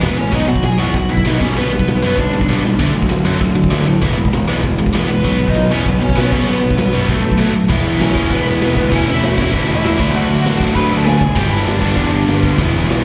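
A straight 4/4 pulse at 196 BPM drives this upbeat, rowdy punk rock clip from a live gig heard through the venue's PA. A big acoustic rock kit with bright cymbals, a punchy kick and a medium-tuned snare plays a fill at 2.5 seconds under a double-tracked overdriven guitar riff with slapback echo and a growly, fuzz-soaked picked bass, both up front. A dark, overdriven lead guitar from a small cranked amp carries the melody with slapback echo, pausing between 2.6 and 5.1 seconds, as the chords move from B through G/B, D and E before the second section turns to E, A/E, D and G.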